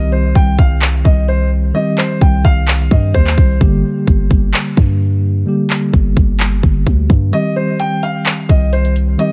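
A concert grand piano melody, a clean tine electric piano with medium tremolo through a combo amp, and a deep, boomy 808-style bass open this melancholic, hard-hitting trap excerpt in C minor at 129 BPM with a half-time feel. The electronic trap kit arrives at 0.4 seconds, its hard-clipped kick, metallic hi-hats and handclaps sitting up front. Both keyboards carry dub echo, and the piano melody pauses at 3.6 seconds before returning at 7.3 as the chords move from C minor to G minor and back, all in an echo-heavy mix with a rolled-off top end.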